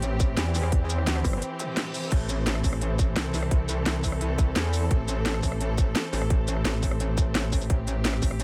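Futuristic and mechanical, this dark technical drum and bass excerpt pairs a tight electronic kick with a layered kit of cracking snare, crisp hats, rim click, shaker and crash, driving an aggressive, saturated FM wobble bass with chorus and sidechain pumping that is joined by a second metallic wobble bass from 1.2 to 4.9 seconds, while a distant, lush bowed string section holds sustained chords with vibrato and a reverse cymbal and electronic zap enter at 1.5 seconds within a brief break that begins at 1.4 seconds, in a dry mix.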